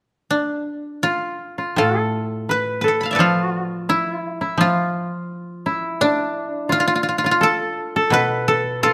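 This is Japanese traditional chamber music, a solitary and meditative passage cut from a longer piece, moving at a rubato 85 BPM in 4/4. A koto carries the melody from 0.3 s, its fingerpicked tone woody and up front, ranging from D4 to B5. A second koto joins at 1.0 s with a mellow line held between D4 and B4. A third koto enters at 1.8 s with a low accompaniment from A2 to F3, sitting a little further back in level. Close, detailed microphones catch each plucked note while a moderate recital hall reverb surrounds the trio.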